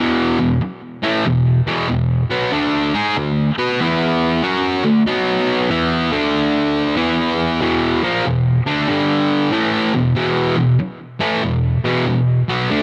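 A bright, double-tracked fuzz guitar plays alone from the first second, a swaggering, raunchy rock riff at 94 BPM with a swung eighth-note feel, its picked, compressed distortion sitting up front in light reverb as it moves through E5, D5, B5 and G5 power chords before the cut at 12.8 seconds.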